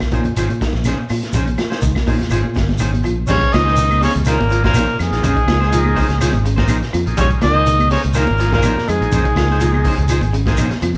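Intense and funky, this afrobeat passage in Bb minor moves at 124 BPM in a straight 4/4, cut from a longer piece and played live by a band in one room with a moderate large studio reverb. A crunchy, saturated breakbeat kit with a punchy kick, dark cymbals and a rolled-off top drives it from the start, joined by up-front, round fingered bass, high-tuned congas struck with hard hands, a grainy shekere and very quiet woody claves. Two twangy, slightly broken-up electric guitars sit in the background, one lo-fi through a small old amp playing low arpeggios, the other at the edge of break-up adding higher stabs over a Bbm11 harmony. At 3.3 seconds the horns come in: a breathy, whispered trumpet carries the melody up front with vibrato and a soft attack, while a raspy tenor saxophone and a bass trombone add very quiet second lines beneath it. A buzzy vintage combo organ slips into the background accompaniment at 4.0 seconds, filling out the groove until the end.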